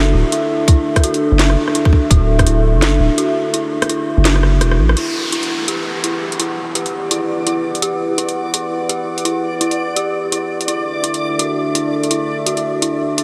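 Heavy and spacious, this half-time drum and bass excerpt moves at 168 BPM in E minor, with a swung sixteenth-note feel and a dreamy mix soaked in a huge ambient reverb. A dark analog pad holds sustained chords throughout, its detuned square and sawtooth tones thickened by a sub octave, chorus, a moving notch and a gritty vintage sampler edge, all pumping against the beat. Over it, an eerie, inharmonic FM bell warbles through arpeggios, mellowed by a low-pass filter and trailed by diffuse ambient delay. Up front, a long, deep sine 808-style bass sustains under the opening D chord until 5.0 seconds, while a tight, layered electronic kick hits between 0.7 and 2.4 seconds and the kit brings a cracking snare, rim clicks and metallic hats, with a drum fill just before the shift to E minor. An electronic downlifter marks that change, and from 6.8 seconds a bright, reversed granular texture swells on a high D, carrying its own reverb as the harmony returns to D near the close.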